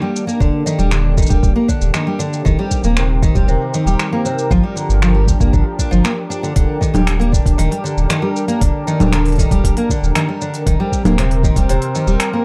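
A straight 4/4 pulse at 117 BPM, built from a soft electronic kick and a crisp small-room kit of congas, finger snaps, hi-hat and shaker, carries this pastoral, delicate folktronica passage in Eb major, where an up-front fingerpicked twelve-string acoustic guitar plays shimmering, octave-doubled arpeggios with finger squeak and delay over a round sine sub bass and a smooth, detuned sawtooth pad with chorus sustaining Ebmaj7, Cm7/Eb and Gm7 chords, set in a dark, warm mix with light reverb.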